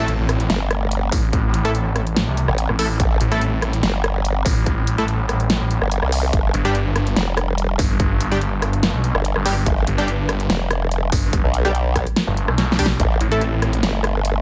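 Heard in a digital-sounding space, this menacing, aggressive heavy wobble dubstep excerpt in a half-time feel opens with a barely audible electronic impact as a growling, distorted saw bass and an up-front formant-sweep wobble bass with chorus and overdrive dominate the low end, cut through by punchy supersaw stabs with delay, a tape-warm electronic kick and a big-room dance kit with a huge snare, hi-hat and rim click, while a lush, airy unison pad with phaser and sidechain pumping sits in the background and a drum fill arrives at 12.6 seconds.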